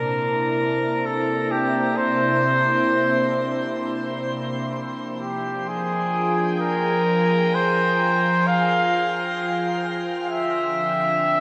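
A wet shimmer reverb with a long 8.8-second tail bathes this luminous, peaceful ambient fragment, cut from a longer piece and floating in free time in C mixolydian. A clear flugelhorn carries the melody up front from start to finish, its vintage, classical-style solo line sitting between G4 and F5 and trailed by a diffuse ambient delay. Alongside it, an evolving wavetable pad, also up front, holds sustained chords from C3 to A5, its dark, detuned sine tone morphing and warbling through a phaser and its own built-in reverb, with a slow attack and long release. The harmony rests on C7, moves to Fmadd9 at 4.8 seconds and settles on Dm7 at 10.3 seconds, giving the brief passage a gently drifting glow.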